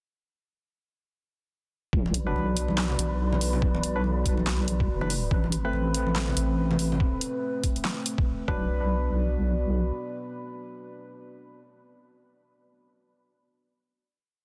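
Deep dubstep at 142 BPM in B phrygian with a half-time, swung feel, this short, meditative and dark piece drops in at 1.9 seconds with a gritty, thumpy pitched-down kick, joined at 2.1 seconds by an overdriven house kit of handclaps, hi-hat and fat snare up front, while vintage congas echo in the background. A deep, soft wobble bass with changing wobble speed sits beneath a moody, detuned analog pad with lush chorus, and an airy, breathy wind-like noise texture holds a single high note behind them. Sparse, hollow organ stabs with dub echo carry on into the final hit at 8.7 seconds, all within a dense, heavily limited modern master.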